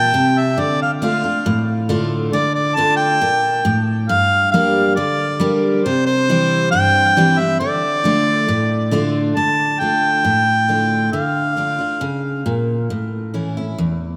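A mellow harmonica carries the melody up front in this brooding, dusty country excerpt, its soft attack and smooth top lending a classical poise to the solo line. The harmonica ranges from C5 to A5, trails a tape echo, and falls away at 12.6 seconds. Beneath it, a picked steel-string dreadnought acoustic guitar supplies full-bodied accompaniment from E2 to G4, sitting up front with a subtle chorus and playing until the close at 14.2 seconds. The tempo is 136 BPM in a straight 4/4, set in D minor and shifting to D harmonic minor at 9.4 seconds as a second section begins, with chords moving from C to Dm, Gm, back through C and Dm, and landing on A near the end. A wet plate reverb with a long tail soaks the mix in a dreamy haze.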